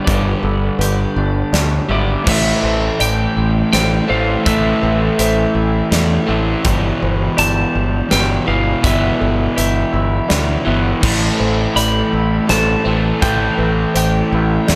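Brooding and melancholic, this post-rock excerpt moves at 82 BPM in 3/4 in A minor, where a dark, clean lap steel guitar carries the slide melody with volume swells and tape echo over soft felt-muted upright piano arpeggios, twangy background electric guitar arpeggios also bathed in tape echo, a bright, crunchy overdriven guitar riff up front joined at 2.2 s by a second, warm overdriven riff guitar in the background, a growling, overdriven fingered bass, and a big rock drum kit with a fat snare and punchy kick, all set in light reverb and small room ambience as the chords pass from G through Am7 and Em/G.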